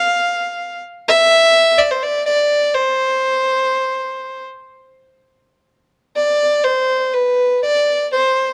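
A lone bowed fiddle, dark and woody and up front, plays a bouncy, festive calypso in free time and C major, tuned to A4 = 441 Hz, moving between B4 and F5 with light vibrato and portamento through three short passages, ending at 8.5 seconds in this fragment of a longer piece, all set in light reverb with a warm production.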